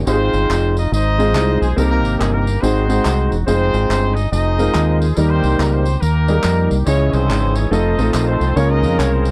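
A round, dark fingered electric bass sits up front from the very start of this uptempo gospel excerpt in Ab major at 141 BPM, with a swung 4/4 feel. At 0.1 seconds an intimate baby grand piano with audible action noise and long sustain joins, along with a vintage horn section carrying the melody in octave doubling with light vibrato, over band-limited acoustic tambourine, group handclaps and maracas. At 6.9 seconds a very quiet, lightly overdriven tonewheel organ returns with sustained chords through a rotary speaker, its key click showing, and the reverent, hopeful mood is captured in a dry, close 1970s-style studio sound.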